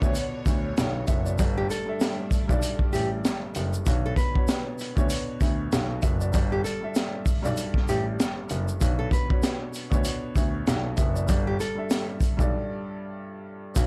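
A crunchy breakbeat kit with a punchy kick and high-tuned snare, dusted with 12-bit sampler grit, drives this dark, moody boom-bap hip-hop cut at 97 BPM in B minor. Alongside it sit a mellow baby grand piano bass with tube saturation, woody upright piano chords, a grainy close-miked tube shaker, and lush bowed strings in the background that drop out at 3.8 seconds before a brief return at the very end. A fingerpicked nylon-string guitar melody with audible finger squeak and tape echo enters at 1.6 seconds over a swung groove and a dry, gritty hardware sound, before a break at 12.5 seconds.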